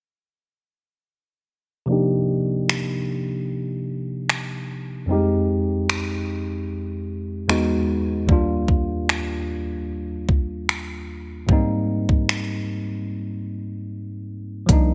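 Light digital reverb surrounds this moody, longing contemporary R&B excerpt in C minor at 75 BPM, where a worn, slightly out-of-tune tine electric piano sits up front under a filter sweep, moving through Cm11, Fm7, Emaj9, Ebmaj9 and Abmaj9; a tape-warm electronic drum kit of knocking kick, metallic hi-hats and finger snaps joins at 2.7 seconds, a break arrives at 13.1 seconds, and a deep, mellow sine 808-style bass enters in the background only at 14.7 seconds.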